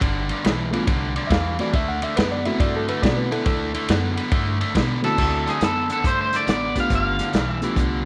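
Electric blues shuffle in D mixolydian at 139 BPM, laid-back and rollicking, with a swung feel as a muffled, lo-fi vintage drum kit with a punchy kick and a woody, thumpy pizzicato upright bass roll under a biting overdriven guitar riff played up front. From 0.7 seconds a reedy, worn electric piano, slightly out of tune and lightly overdriven, adds accompaniment over chords moving from G9 to D9. At 5.0 seconds a twangy, slightly broken-up electric guitar takes the melody with lush chorus, all set in light reverb in this short cut from a longer piece.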